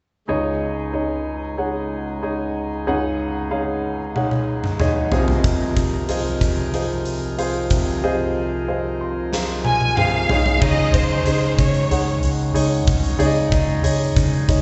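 This piano-driven pop piece, cut from a longer work, moves at 93 BPM in a straight 4/4 in Db major with an uplifting, anthemic mood. A warm baby grand piano with long sustain leads the accompaniment up front, adding a fill of its own, while a pipe organ on a nasal cornet solo stop, with a touch of chiff, holds sustained chords beneath it as the harmony moves from Dbsus2 to Ab6/C and back. A huge acoustic arena drum kit enters at 4.2 seconds with bright cymbals, a fat snare and a punchy kick, marking the way forward with drum fills. A lush, expressive violin section with vibrato and delay carries the melody from 9.7 seconds, and a dark, round, foam-muted fingered electric bass joins at 10.6 seconds as the piece opens into a new section. The band sounds as if playing live in one room, bathed in a wet church reverb with the top end rolled off at 8.0 kHz.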